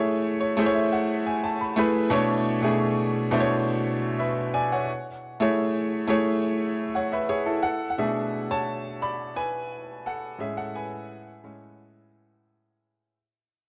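Soul piano piece at 87 BPM in A major, with a smooth, warm mood, carried entirely by a bright baby grand piano that sits up front with an intimate, brilliant tone and audible action noise under light reverb. It opens with a fill over an Amaj7 chord in the first 2.1 seconds before moving to Bm11. From 7.6 seconds the piano moves into a solo passage over Bm9 and Amaj7 as the music fades out, ending at 13.2 seconds as a short cut from a longer piece.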